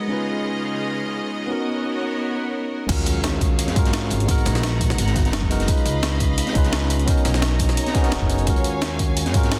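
Swung breakbeats arrive with the drop at 2.9 seconds in this lush, dreamy liquid drum and bass excerpt, where a clean tine electric piano with delay and a rich, biting bowed string section with sidechain pumping open the track before a punchy, tape-warm electronic kick, a gritty pitched-up sampler-style kit with filtered hats, cymbals and snare, a dark, saturated second kit set in the background, a woody pizzicato upright bass and a very quiet electronic impact all enter over lush ninth and eleventh chords.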